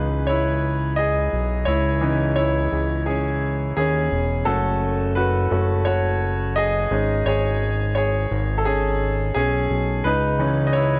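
Earnest and bittersweet, this piano-driven pop excerpt moves at 86 BPM in C# minor with a gentle sixteenth-note swing, cycling through C#madd9, F#m and G#sus4 before returning to C#madd9 at 10.1 seconds. A brilliant, up-front grand piano with long sustain carries the music as its featured voice from start to finish, while a fat analog bass, detuned and saturated with a nasal sawtooth edge and fast attack, holds the low end beneath it. Light reverb and small-room ambience wrap the track in a dark production.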